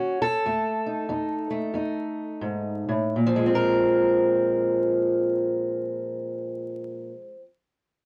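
A dusty, vintage-sounding recording opens the clip, with vinyl crackle over a dim, mellow production and a short, close booth ambience. This is a brief cut from a longer acoustic country blues piece, smoky and soulful in mood, moving at roughly 78 to 102 BPM in 4/4 with a swung eighth-note feel. A lone fingerpicked steel-string parlour guitar carries everything from 0.0 to 7.5 seconds, its boxy tone sitting up front. The opening phrase slows down through its first 3.2 seconds, settling on an F7#9 chord at 0.5 seconds. A second phrase begins at 3.2 seconds on a Bbsus2 chord, giving the short passage a relaxed, late-night blues character.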